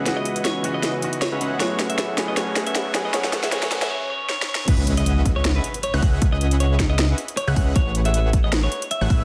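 Lush and dreamy, this future bass excerpt moves with a swung, half-time feel over lush C#m11 and Amaj13 harmony. A build-up opens the clip: a brilliant, intimate grand piano with audible action noise plays pumping, delayed accompaniment, while a very quiet, breathy pad with a warbling vintage chorus sustains chords beneath. A bold, detuned sawtooth polysynth riff, also pumping, rides a filter sweep, and a thick, fat analog bass sits heavily underneath. Drum fills on an overdriven trap kit with a sharp snare and bright hats push things forward, and a faint riser builds toward a brief break at 3.9 seconds, where a quiet swell takes over. The drop lands at 4.7 seconds with a quiet impact, a hard-clipped electronic kick up front, and a punchy unison pluck adding gritty 12-bit arpeggios in the background. Throughout, from the opening moments, a clean, twangy picked electric guitar carries the melody through spring reverb and tape echo. 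The dense, heavily limited master sits in a moderate digital room.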